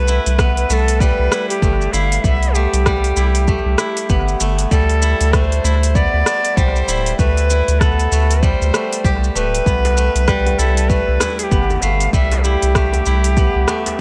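A reedy, airy cedar flute with 12-bit sampler grit and dub echo carries the melody in this meditative organic downtempo excerpt, over ringing, silvery steel-string zither arpeggios also bathed in dub echo, a round, up-front analog bass, a deep electronic kick and a tape-warm deep house kit of metallic hi-hats, rim click and shaker through analog delay, while a very quiet, distant djembe enters at 9.8 seconds in an echo-heavy, dark-topped mix.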